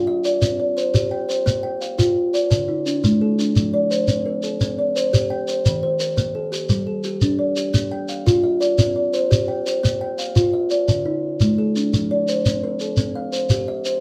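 Southern African traditional music built on an mbira-style interlocking cycle, rippling and hypnotic, moving at 115 BPM in a straight 12/8 within a C equiheptatonic tuning, cut from a longer piece. An up-front kalimba carries arpeggios with a woody, hollow-box thumb pluck that keeps ringing, reaching from D3 (29 cents flat) to G5, while a grainy, mellow shekere sits close and dry beside it from 0.2 s. The cycle turns through Cm, Bb, D5, F, C5, Eb, G5 and Bb, then Cm, Bb, D5 and F again before settling back on Cm at 13.0 s, all in a moderate studio reverb.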